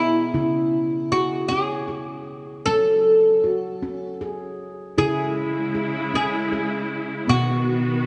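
A slow, lilting 6/8 pulse with a straight feel sets a gentle, hypnotic mood in this short excerpt of meditative world music built around tuned percussion. A handpan rings out arpeggios from the very start, its stainless-steel tone struck with the fingertips and sounding airy and close. Over it, an acoustic oud carries the melody up front, its plectrum-plucked double strings and fretless neck giving a bright, woody voice. At 5.0 seconds a studio string section enters with bowed, sustained chords, lush and focused with a smooth top and vibrato. The whole recording is bathed in a deep, wet church reverb layered over a small room ambience, letting each note linger into the next.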